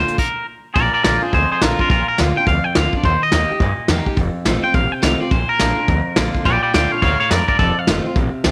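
Lightly reverberant, this rowdy, rollicking rockabilly passage swings along at 211 BPM in Bb major, with a bright, twangy electric guitar carrying the melody through tape echo up front and, after a stop from 0.2 to 0.8 seconds, taking a clean solo, backed by a full-bodied picked dreadnought acoustic guitar, a woody, thumpy pizzicato upright bass on gut strings, and a soft brush drum kit that enters at 0.1 seconds with tight kick, snare, hi-hat and crash.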